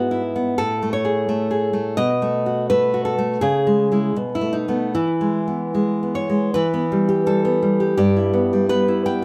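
Romantic solo classical guitar in E major, nostalgic and tender, drifting with rubato at about 73-86 BPM in 2/4, where a bright, full-bodied fingerpicked nylon-string guitar sits up front with a touch of slapback echo and light reverb under close, detailed microphones, moving through Amaj7, B7 and C#m back to E before turning to E minor at 6.5 s in this 9.2-second fragment cut from a longer piece.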